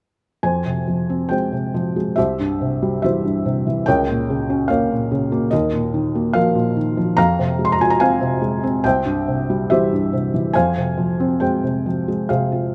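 Wistful and reflective, this short classical excerpt features a lone felt-muted upright piano playing with lyrical rubato, its soft, intimate tone sitting up front with short sustain and audible action noise, close and detailed under light reverb as the chords move from Fmadd9 through Gdim/Db and Ebsus2 before settling on Fm at 10.5 seconds.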